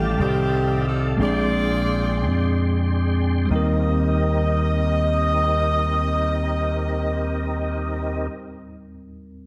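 A slow, soulful gospel passage in 6/8, cut from a longer piece, opens with all four parts sounding together in Eb major at roughly 46-62 BPM counted in dotted quarters, with the pace slowing down over the first 3.5 seconds. A tight, close-miked saxophone section carries the melody up front in a jazz style, its bright tone touched with light vibrato. Beneath it, a punchy slap bass runs through an envelope filter, direct and amped and sitting boldly forward in the mix. A bell-like tine electric piano supplies clean accompaniment from the background, while a clear tonewheel organ holds sustained chords with key click, chorus vibrato and a fast rotary speaker. The harmony moves from F13/A to Bb13 before settling on Eb6 at 3.5 seconds, where a second section begins. The saxophones, bass and organ stop at 8.3 seconds, leaving the electric piano ringing alone until 9.5 seconds in a moderate scoring-stage reverb that gives the uplifting mood a sense of space.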